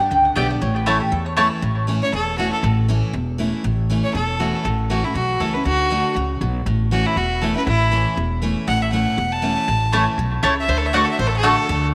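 Driving and lively, this excerpt from a longer bluegrass piece races along at 238 BPM in 4/4, with a swung eighth-note feel in A mixolydian. A picked mandolin with doubled strings opens on the melody for the first 1.3 seconds, while a second mandolin, woody and up front, adds stabs treated with tape echo, returning near the close from 9.9 seconds. Underneath, a bright, full-bodied dreadnought acoustic guitar plays picked accompaniment, and a thumpy, gut-strung upright bass sits up front with a pizzicato bottom end. At 2.0 seconds a clear, nasal fiddle with light vibrato and an airy bow takes over as soloist, carrying the second line through to the end. The harmony moves from G to A, then to D and back to A before returning to D, and a moderate plate reverb gives the whole group a sense of space.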